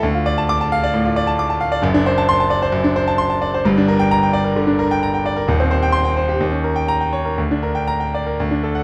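Agitated and passionate, this classical virtuoso piano study unfolds in 4/4 with a free, rubato feel, in a short cut from a longer piece lasting 8.8 seconds. A solo concert grand carries everything, its bright, brilliant tone sitting up front, with a deep bass reaching down to Eb1 and the upper register extending to D6. The harmony moves from Dm through D7/F# into Gm, then passes through Cm/Eb and Eb7 before settling on Gm/D. The instrument sounds natural, framed by light reverb. The overall production leans dark and warm.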